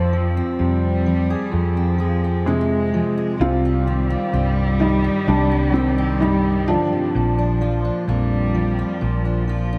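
A soft, felt-muted upright piano carries the melody up front in this reflective, intimate folk fragment, joined by a distant, woody bowed cello with vibrato and delay on a second line, a full-bodied fingerpicked steel-string acoustic guitar with fresh strings, and a round, amped hollow-body electric bass, the whole mix steeped in a lush hall reverb that lends a dreamy haze as the chords move from Fm to Cm to Bb.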